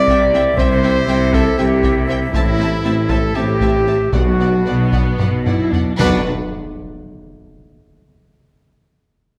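An epic, heroic orchestral film-score excerpt opens with brass and low strings sounding together: mellow, distant French horns and a clear woodwind section hold sustained chords while a clear trumpet punches out stabs and a dark, close-miked tuba anchors the bass beside rich cellos and soft-attacked double basses. Moving in a straight 7/8 at roughly 223-241 eighth-note beats per minute in B phrygian, the harmony shifts from C to Am to Bm. Lush, vibrato-laden violins carry a high melody with a second violin line beneath, and very quiet violas fill in the accompaniment, all set back in the mix. Compressed, saturated taiko drums struck with heavy sticks pound throughout, with a fill from 5.2 to 6.0 seconds, while round, calf-headed timpani join at 4.1 seconds. At 6.1 seconds a huge, bright impact hits and rings out in a wet recital-hall reverb, closing the fragment.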